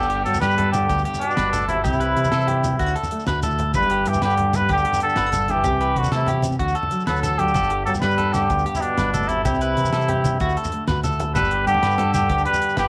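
Sunny and danceable, this 12.9-second excerpt of highlife guitar band music in G major moves at 126 BPM in a straight 12/8, with a nasal, breathy muted trumpet singing the melody up front over a bright, distant trombone second line, fingerpicked nylon-string guitar in the background, twangy, slightly broken-up electric guitar arpeggios with slapback echo, a round, punchy fingered bass, low-tuned congas, a grainy shekere and a dry, damped drum kit with a fat snare that plays a fill at 6.9 seconds, all cycling through G, C and D in moderate spring reverb.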